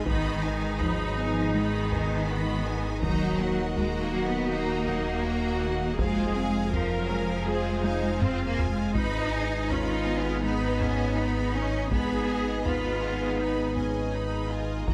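Focused, lush cellos carry the bass alongside smooth double basses and a deep sine sub bass in this tense, relentless hybrid orchestral and electronic film cue at 81 BPM. Above them a rich violin section sings the melody over distant second violins, intense violas, a dark, tight French horn section, a ringing harp-like synth pluck, a calm detuned organ-like drone and hard-stick taiko drums that play a fill from 7.8 to 8.9 seconds as the harmony moves through Abm, Ebm and Fm.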